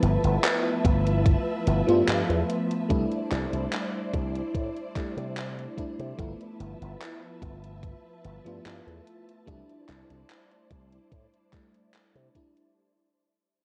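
Vaporwave at 73 BPM in C major, this woozy, nostalgic fragment of a longer piece drifts through a slow fade-out across its 12.8 seconds, with the harmony swaying between G13 and C69. A lush, dreamy FM electric piano with a soft pad layer carries the accompaniment, its detuned, fast-attack tones decaying through a phaser, subtle chorus and analog delay. Alongside it, a silky vintage string machine holds sustained chords with a slow attack and long release, softened by ensemble chorus. A bright, growly slap bass runs through an envelope filter and tube saturation, sitting punchy and up front. The gated 80s drum machine supplies handclaps and hi-hat drenched in gated reverb and overdrive, while a thumpy, overdriven electronic kick enters at 0.8 seconds, up front in the mix. The whole track has a cassette-tape character, with light reverb and a digital ambience.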